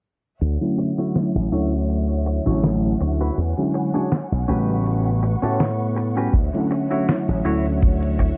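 A lightly swung 4/4 groove from a detuned 8-bit drum machine's hi-hat and snare drives this nostalgic, woozy vaporwave excerpt, where a growly envelope-filtered slap bass and a dreamy FM electric piano with a soft pad layer, tremolo and tape echo carry Dmaj9, E13 and A13 chords, while a bright, clean semi-hollow guitar riff and a close, bowed string section both move through filter sweeps, and a dry, tight kick drum joins at 6.3 seconds, all within a dark, close-sounding production.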